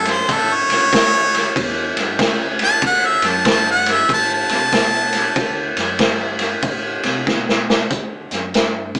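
Heard through a small-speaker sound in a moderately ambient studio, this laid-back, rollicking electric blues shuffle is a short cut from a longer piece, with the band playing live together in one room. An up-front, close-miked harmonica carries the jazz-style melody with light vibrato, soft attacks and scooped notes until 5.6 seconds, over a woody, thumpy pizzicato upright bass on gut strings sitting in the background. A vintage drum kit with dark cymbals, a punchy kick and a medium-tuned snare swings the groove on hi-hat, ride and snare. After the chords move from A to D7 at 2.8 seconds, the kit throws in a fill at 7.3 seconds, leading into the settle on D at 7.9 seconds.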